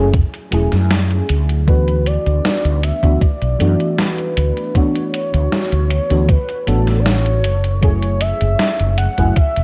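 A hazy, woozy vaporwave fragment with a cassette-tape haze and digital ambience, drifting in a straight 4/4 over F#m9 and D69 chords. A soft, round FM electric piano with phaser, analog chorus and tape echo plays alongside a dark, punchy fretless bass and a thumpy, up-front electronic kick, while a gated 80s drum machine adds hi-hat and a gated-reverb snare. At 1.7 seconds a velvety, detuned synth lead enters with chorus, vibrato and tape echo, carrying the melody to the end at 9.6 seconds.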